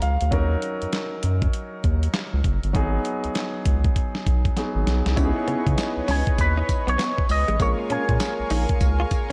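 Up front, a gritty, sampler-style drum kit with a thumpy kick, handclaps and tambourine drives this slick, confident new jack swing cut at 99 BPM, swung on the 16ths, alongside a deep, round analog bass and an intimate concert grand piano with audible action noise and shimmer reverb, moving from D#m7 to G#m7. After a drum fill, the second half starts at 5.2 seconds over C#m9 and A#m7, adding a bold, brassy analog pad with chorus and a clean, direct-recorded electric guitar riff tucked in the background. From 6.1 seconds, a twangy envelope-filtered electric guitar carries the melody through analog chorus, all within a dark production with light reverb.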